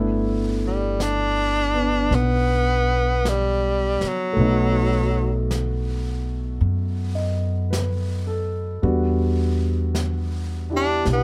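At a slow 54 BPM in 4/4, this tender, late-night jazz ballad sways with a heavy swing on the eighth notes, cut from a longer piece in G major. A woody, thumpy upright bass, plucked on gut strings and placed up front, opens the fragment beside a concert grand piano that supplies natural-sounding chords with deep bass beneath. At 0.7 seconds a bright, punchy tenor saxophone takes the solo melody, sitting forward in the mix with a forceful, vibrato-laden jazz voice. A brushed drum kit joins softly at 1.0 seconds, its medium-tuned snare and hi-hat heard as if in a small room. The harmony moves from G69 to B7 and then Em9, and the whole short passage carries a dark, warm production with little reverb.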